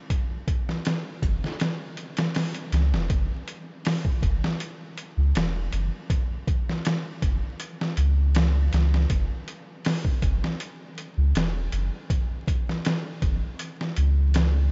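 A gritty, pitched-down sampler-style drum kit with a thumpy kick, medium-tuned snare and hi-hat opens this hypnotic, melancholic trip hop fragment, overdriven and compressed up front in a small room, before a deep, round, soft dub sub bass with sustained, fast-attack notes enters at 1.2 seconds, all under light reverb, dulled highs and vinyl crackle in a passage cut from a longer piece.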